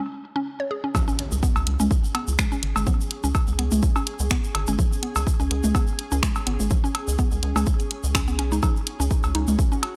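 A rubbery square-wave bass, dark and bouncy with a moving notch, sits up front from 1.3 seconds in this hypnotic minimal techno excerpt at 125 BPM in 4/4, its notes pumping under the sidechain. It opens with a short break in which a woody, round, mallet-like synth pluck plays its riff from 0.4 seconds, dressed in chorus and tape echo, before the drop lands at 0.9 seconds with a punchy, layered electronic kick, analog-toned cowbell, congas and toms, and a background impact. An overdriven garage kit of finger snaps and hi-hat joins alongside a grainy acoustic tube shaker, all riding a light 16th-note swing. From 2.1 seconds an ethereal, airy pad of detuned unison voices drifts in with a slow attack, ensemble chorus and its own reverb, also pumping with the sidechain. The overall sound is cool, dry and gritty, with a hardware edge and transformer saturation.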